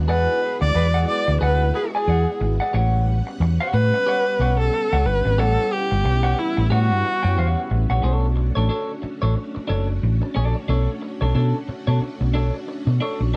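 A lush, sawtooth string machine with ensemble chorus holds sustained chords over a round, up-front hollow-body bass in this hypnotic, driving funk piece at 91 BPM in B minor with swung sixteenths, as a boxy, bowed viola carries the melody until 7.7 s, a clean, twangy picked guitar with spring reverb accompanies throughout, and a mellow, distant horn section adds a brief second line from 0.4 to 1.9 s, captured in a dry, close 1970s-style studio sound.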